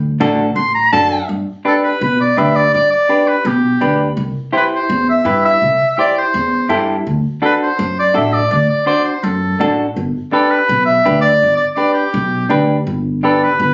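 Captured on a phone in the room, this short cut from a longer piece has a compressed, muffled character, with a moderate studio reverb and a dull top end. It is a festive, danceable cumbia in G major at a brisk 166 BPM in straight 4/4, tuned slightly sharp to A4 = 442 Hz. The upright bass starts things off, plucked with a woody, thumpy tone on steel strings and sitting up front in the low register. The semi-hollow electric guitar joins at 0.2 seconds with clean, fingered accompaniment that sounds dark and scooped. At 0.6 seconds the oboe arrives as the solo melody voice, played in a classical style with vibrato and a smooth top. After 1.3 seconds the music moves into a longer section where the harmony steps from G to C, back to D, and home to G.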